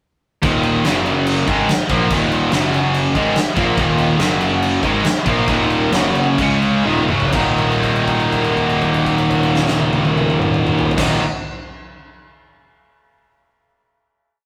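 This short, complete hard rock piece in Eb minor opens at 0.4 seconds with everything arriving at once: two double-tracked electric guitars hammer out a menacing power-chord riff, one crunchy and overdriven, the other scooped and high-gain with distortion, both bright and up front. Beneath them, a growly fuzz bass drives steady eighth notes that double the guitar riff, sitting in the background. A huge arena drum kit with a fat snare, punchy kick, crashes and toms lays down a big, natural rock groove in straight 4/4. The riff moves between Eb5, Gb5 and Db5 power chords, and from 3.8 seconds the tempo, which spans 122 to 144 BPM, slows, before a drum fill at 6.9 seconds leads into a final Eb minor chord held from 7.3 seconds to 11.0 seconds. The whole performance has the rough feel of a rehearsal room, with a moderate stone-room reverb and warm saturation.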